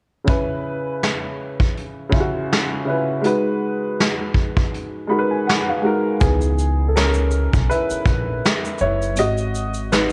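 A slightly detuned upright piano sits up front in this melancholic, hazy lo-fi hip hop fragment, its tone softened by cassette tape and a low-pass filter as it moves between C#m7 and G#m7 in C# dorian. The tempo is a relaxed 81 BPM in 4/4, with a gentle swing on the sixteenths. A vintage brush drum kit plays hi-hat, shaker, medium-tuned snare and a punchy kick, with a rolled-off top and a coat of 12-bit sampler grit. At 4.7 seconds the kick drops out while the piano plays a fill, and at 6.2 seconds the piano moves into a solo as a woody, thumpy pizzicato upright bass on gut strings enters. Light reverb and studio ambience surround the dark, warm production, and the clip is cut from a longer piece.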